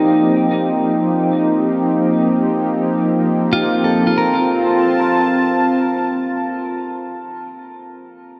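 A bright, detuned sawtooth analog pad with chorus and tremolo sits up front in this weightless, serene ambient fragment in free time and F mixolydian, holding smooth, soft-attack chords that move from F7sus4 to F at 4.1 seconds while a clean, compressed electric guitar picks arpeggios through a diffuse ambient delay, the whole piece set in a vast, echoing cathedral reverb.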